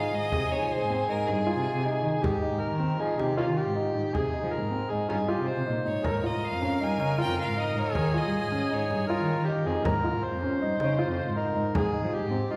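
This restless, shimmering piece of contemporary chamber music, cut from a longer work, opens with a bright, intense bowed violin melody over a gritty, overdriven harmonica, warm grand piano arpeggios and a dark, woody cello bass line, all moving in an uneven five-beat meter. A frame drum joins at 0.3 seconds, played with hard hands and heard close and dry. The violin pauses at 2.0 seconds and returns at 5.9 seconds, its vibrato singing once more. Throughout, the amplified harmonica carries an up-front second line in a pop style, with tongue slaps, scooped notes and vibrato, while the single bowed cello adds its own vibrato beneath. The harmony settles on Abmaj7, shifts to Bbm and comes back to Abmaj7 near the close. A wet scoring-stage reverb places the ensemble further back in the room, giving the sound a spacious glow.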